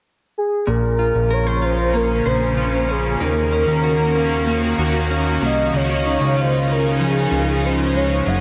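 Dream pop with a hazy, ethereal mood, this excerpt opens on a velvety synth lead at 0.4 s singing a mellow, chorused melody over a fat, saturated analog bass and dark, picked clean electric guitar arpeggios, both entering at 0.7 s, while a cloudy, evolving granular pad with tremolo drifts in at 1.2 s through Bbmadd9, Ebm7 and Dbadd9, the whole mix soaked in a huge ambient reverb.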